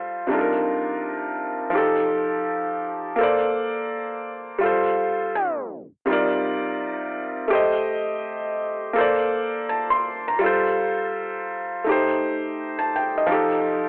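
Gritty, dry cassette-tape sound with a telephone-like squeeze and moderate studio reverb frames this melancholic, reflective hip hop piece, cut from a longer work, where a lone felt-muted upright piano sits up front, mellow and intimate with audible action noise, swinging through chords such as Cm11, Bbmaj9 and G9sus4 before a piano fill at 5.0 seconds runs into a tape stop ending at 6.1 seconds, after which the progression returns, shaded by Am7b5.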